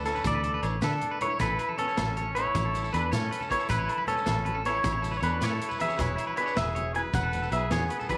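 A steady 12/8 groove at 104 BPM drives this sunny, danceable highlife guitar band passage in A major, where a clean, twangy electric guitar carries the melody up front over a round, foam-muted fingered bass, a slightly broken-up electric guitar picks arpeggios, a boxy fingerpicked acoustic guitar with finger squeak adds swing-style accompaniment in the background, a clear trumpet with vibrato sings a second line, and a punchy vintage drum kit with a rolled-off top fills from 0.6 to 1.4 seconds, joined by ringing agogo bells, grainy shekere and distant congas, all in light reverb and small room ambience as the chords move from Dsus2 to Aadd9 and then Eadd9.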